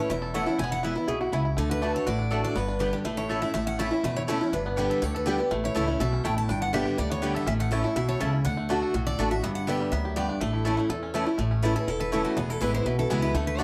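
At a driving 245 BPM in straight 4/4, this joyful bluegrass excerpt in A mixolydian is carried by a woody, thumpy upright bass played pizzicato up front and a boxy parlour guitar picking out the accompaniment, while a bright jumbo acoustic guitar and a twangy, percussive banjo share the melody and a round mandolin adds stabs from 0.3 s. A nasal, metallic resonator slide line appears only briefly, from 1.1 to 1.5 s, and a steel-string guitar solo arrives at 11.4 s as the chords move through A, D, G and E. The whole group sounds set back in a small, reverberant room.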